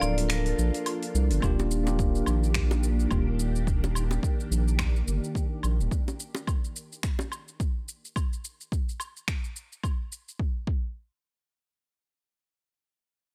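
Sunset chillout in a relaxed, sunny mood at 107 BPM in Eb major, with a swung sixteenth feel, opening on Gm7 before settling onto Ebmaj7 at 1.4 seconds. A ringing vibraphone melody with gritty sampler character and tape echo sounds only briefly at the start, over a bell-like tine electric piano with delay that gets a filter sweep from 1.4 seconds, silky string-machine chords with phaser and ensemble chorus, and a round, dark analog bass sitting up front. The deep house kit brings metallic hats, finger snaps, shaker and woodblock with overdrive, joined by a deep, overdriven electronic kick at 1.4 seconds and tight, high-tuned bongos from 1.6 seconds, all in a close, dry room.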